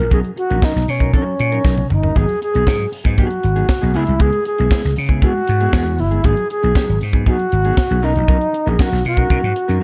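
A straight 4/4 disco groove at 118 BPM rides on an up-front, growly slap bass with an amped, punchy edge, joined at 0.1 s by a dry, polished funk kit with a high-tuned snare and tight kick. Over a dark, clean fingered electric guitar, a pure alto flute with vibrato and lifted highs carries the sultry, danceable melody as the harmony moves from Bmaj9 through G#m7 and C#m7 and back. A drum fill from 1.6 to 2.2 s opens into the second section of this short cut, all set in light reverb with a dark, warm production.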